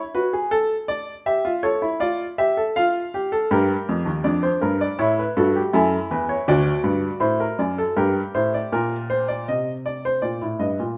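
Serious and solemn, this fragment of a baroque-style three-part fugue in G minor moves at a steady 80 BPM in 4/4, played on a solo baby grand piano from 0.1 to 11.0 seconds, its intimate, natural tone with short sustain and audible action noise ringing through a moderate stone room reverb that places the listener further back in the space.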